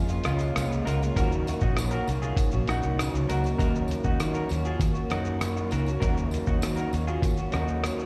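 A straight 4/4 groove from a muffled, compressed sampler-style drum kit with a thumpy kick, rim click, hi-hat and shaker, alongside a jingly tambourine in the background, carries this mellow, hazy indie and bedroom-pop fragment, where a dark, foam-muted fingered electric bass sits up front beside a slightly broken-up picked electric guitar swimming in analog chorus, warbly pitch drift and slapback echo, while a twangy second guitar line enters at 0.3 seconds with subtle chorus and digital delay, and a reedy, worn, slightly out-of-tune electric piano with cassette-tape grain hums behind, all heard as a live gig through the venue's PA with recital-hall reverb over Bbm7 and Ebm7 chords.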